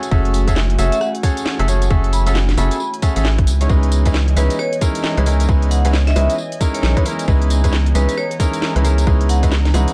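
A rubbery, hollow square bass sits up front from 0.1 seconds, bouncing under a tight electronic kick in this soulful, bouncy two-step garage excerpt with a swung 16th-note feel. Bright grand piano stabs and a metallic, ringing vibraphone struck with hard mallets, entering at 0.8 seconds, both trail dub echo over F#m9 and C#m9 chords, while a cracking snare, crisp hats, rim clicks, bongos and tambourine drive the groove. Beneath them a very quiet, smooth sawtooth pad holds sustained chords and a warbling, nostalgic lo-fi pad with chorus, reverb and sidechain pumping drifts in the background, inside a dark production with light reverb.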